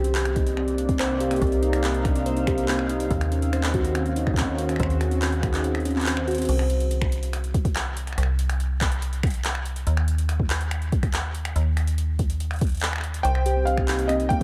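An echo-heavy mix with moderate spring reverb and a digital ambience frames this glitchy, melancholic IDM passage in C minor at 142 BPM, cut from a longer piece. A warbly, nostalgic tape-like pad holds detuned chords over Cm11 and Ebm11 while a harp-like, ringing synth pluck spins arpeggios through chorus and dub echo, above an up-front, tube-saturated FM bass, a booming, overdriven analog drum machine with metallic hats, finger snaps, handclaps and crash cymbal, and a soft electronic kick. Pad and pluck fall away at 6.5 seconds, leaving bass and drums running, then the pluck returns at 13.2 seconds alongside a muted, intimate felt-muted upright piano melody in tape echo over Cm7, with the pad rejoining at 13.9 seconds.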